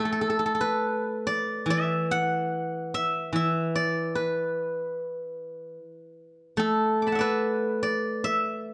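Serene and pastoral, this short passage cut from a longer piece presents Chinese traditional music for solo plucked strings, flowing in a free, rubato feel over a 4/4 frame. A steel-string zither carries everything alone from 0.0 to 8.7 seconds, its acoustic voice sitting up front and spanning from E3 up to D6. Played with fingerpicks, the instrument has a silvery, ringing quality that lets each plucked note bloom. Close, detailed microphones catch the fine grain of the strings, while a moderate recital hall reverb of about 1.5 seconds gives the notes a gentle sense of space. The result feels intimate yet airy, like a quiet moment of contemplation.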